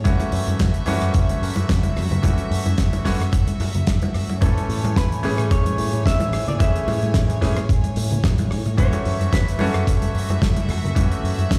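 A gritty, thumpy electronic kick sits up front in this sunny, feel-good nu-disco excerpt at 110 BPM in 4/4, with a light swing on the sixteenths. Beneath it, a punchy picked electric bass runs through an envelope filter, while a damped 70s drum kit adds hi-hat, rim click and a fat, dry snare, and ringing congas played with soft hands sit in the background. A brilliant baby grand piano, close enough to reveal its action noise, plays accompaniment through a digital delay, and a floating, soft-attack string section holds sustained chords, both pulsing with sidechain pumping. At 4.4 seconds a clean, twangy electric guitar with an envelope filter enters with the melody, trailed by tape echo. The harmony moves from F#m7 to Amaj7 and back, and the mix carries little reverb of its own but sounds as if played on a big system in a bare stone room.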